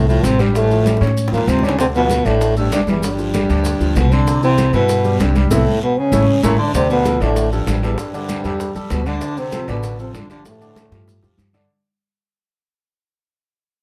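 Afro-Cuban jazz, danceable and sophisticated, where a growling, gritty trombone carries the melody over a breathy, whispered baritone saxophone second line, a natural-toned baby grand piano, a woody pizzicato upright bass up front, and a bed of bright high-tuned congas, tight bongos, a raspy guiro and grainy maracas, all set back in a wet club reverb, with drum fills scattered throughout and a band accent leading into a fade-out from 6.7 seconds.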